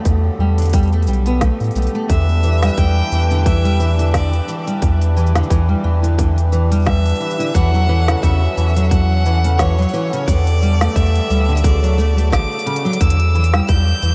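A round, deep sub bass sits up front in this delicate, intimate folktronica fragment, under a tight, overdriven electronic kick and a tape-warm electronic kit of woody snare, smooth hi-hats and shaker, with a brief drum fill just before 13.0 seconds. A dark, fingerpicked steel-string acoustic guitar spins arpeggios through analog chorus and delay, while a reedy, breathing hand-pumped harmonium holds sustained chords. From 2.1 seconds a clear, focused solo violin carries the bowed melody with vibrato and its own delay, all set in a dreamy mix soaked in a huge ambient reverb.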